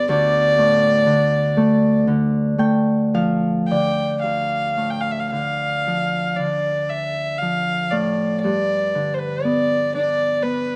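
A close, detailed recording sets a single fiddle and a Celtic harp up front in a moderate recital-hall reverb, capturing a brief stretch cut from a longer Celtic slow air in D dorian. The mood is longing and mournful, with a rubato feel hovering around 53 to 63 BPM in 4/4. The bowed fiddle carries the melody with a dark, woody tone and light vibrato, staying between B4 and G5. Beneath it, the fingerpicked harp gives a ringing, acoustic accompaniment that reaches down to D2, resting on D minor before moving to G at 8.4 seconds. Between 2.0 and 4.2 seconds the harp adds a fill, just before the music passes into a new section at 4.2 seconds.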